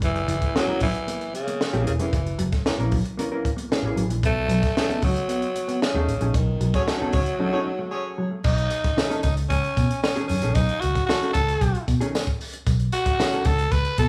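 A growling, raspy tenor saxophone leads this playful funk excerpt at 114 BPM over foam-muted fingered bass, a dry, up-front cocktail drum kit with a high-tuned snare, a hollow-body jazz guitar and a mellow background guitar riff, with a tight horn section adding a second line from 6.7 to 8.3 seconds during a band accent and break, and a jingly tambourine entering at 8.5 seconds, all in a live room with moderate large studio reverb over F#9, B9 and B13 chords.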